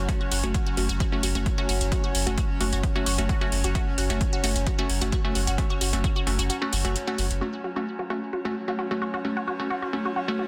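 A punchy, up-front electronic kick drives this intense peak-time techno cut in F# minor at 131 BPM, a straight 4/4 fragment from a longer piece. Beneath it, a deep, saturated sub bass holds F#1 with a fast attack, pumping against the sidechain and softened by a low-pass filter. Metallic hi-hats, also low-pass filtered, ride above. A squelchy, resonant blip pluck sits on F#4 through phaser, tube saturation and tape echo, while crisp, detuned wavetable chord stabs on F# minor decay into their own tape echo. An eerie, inharmonic FM drone fades in slowly under chorus and its own reverb. The kick drops out at 6.1 s, and the bass and hats stop at 7.4 s, leaving the drone, stabs and pluck to carry the closing stretch to 10.5 s in a stone room with a dense, heavily limited master.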